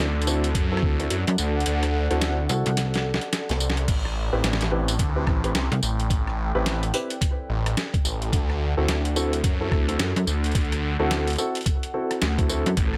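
Dark, worn grand piano stabs pumping with tape echo open this swaggering, playful glitch hop excerpt at 108 BPM, over a swirling, phaser-soaked detuned saw bass and a warbling, nostalgic pad sitting in the background on a D7 to Am9 to D7 progression. Gritty, pitched-down boom bap drums with a medium-tuned snare, tambourine and rim clicks swing on the sixteenths, joined by a thumpy electronic kick that drops out from 1.7 to 3.9 seconds while a drum fill runs from 2.8 seconds until the kick returns. A snappy, metallic FM slap bass with tube saturation pops up front in two bursts, and the mix stays dry.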